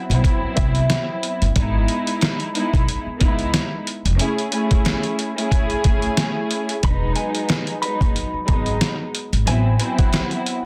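A dense, heavily limited modern master with light reverb frames this confident, nostalgic boom-bap hip-hop excerpt at 91 BPM in 4/4, swung on the sixteenths and moving through mostly rootless sixth and seventh chords. Up front, a gritty, pitched-down sampler-style drum kit with a thumpy kick and medium-tuned snare is joined by a woody pizzicato upright bass on gut strings, while a close, dark string section plays soft-attack sul tasto chords through a cassette-tape haze and plate reverb. In the background, a mellow, clean, fingered electric guitar carries the melody through lush chorus and tape echo, sounding briefly at the start and returning from 6.8 seconds.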